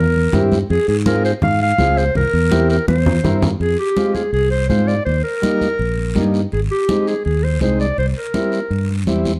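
A warm, close-miked clarinet with slapback echo carries the melody up front in this driving, passionate cumbia excerpt at 165 BPM, over an up-front fingered electric bass, bright congas, a reedy vintage combo organ with light vibrato and a faint raspy guiro, all in a dark mix with light reverb, as a fill from 2.9 s leads into an F dorian passage at 3.6 s.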